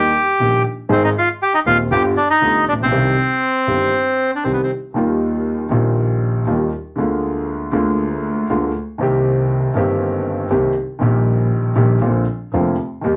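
A tense, passionate tango excerpt in rubato feel opens with a reedy, up-front bandoneon melody over a dark, mellow concert grand piano, whose intimate sound carries deep bass and audible action noise, and a clear, focused bowed double bass with vibrato in the background; the bandoneon falls silent at 4.7 seconds, and piano and bass carry the music in a moderate studio reverb until 13.2 seconds.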